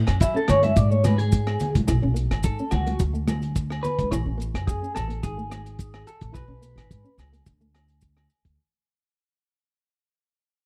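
A dry, close 1970s-style studio recording with small room ambience captures this sunny, danceable highlife guitar band excerpt at 107 BPM in 4/4, fading out as a thumpy, woody upright bass and a gritty, saturated breakbeat kit of tight kick, hi-hat and rim click sit up front, a slightly broken-up, compressed electric guitar plays arpeggios through phaser and slapback echo over a small, thumb-plucked nylon-string guitar, ringing agogo bells sit in the background and grainy maracas sound close, while hard-handed, high-tuned congas play only from 0.5 to 4.1 seconds, all over chords moving from A6 through Bm6, Bsus2 and D5, then A6, G#m and Bsus2 back to D5.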